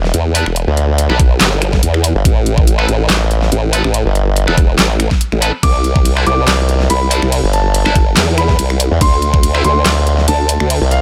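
Two formant-sweep wobble basses and a dubstep drum kit open this aggressive, chaotic excerpt of heavy wobble dubstep, cut from a longer piece and moving at 142 BPM in 4/4 with a half-time feel and a light swing on the 16ths. The paired basses sit up front, sawtooth and sine tones run through a formant filter with chorus and overdrive, one of them detuned, giving a thick, compressed, sustained growl between E1 and E2. The drum kit is layered and overdriven, built around a huge snare with crash cymbal, hi-hat, handclaps and finger snaps. A bright, double-tracked distorted electric guitar adds picked stabs with tape echo, and a knocking electronic kick arrives up front at 1.2 seconds. At 5.6 seconds a dark, mellow baby grand piano takes the melody high in its range, its long sustain trailed by tape echo, over chords moving from Em7 through a chordless stretch to Cadd9 and D7(no3). The mix is dry and loud, with little reverb.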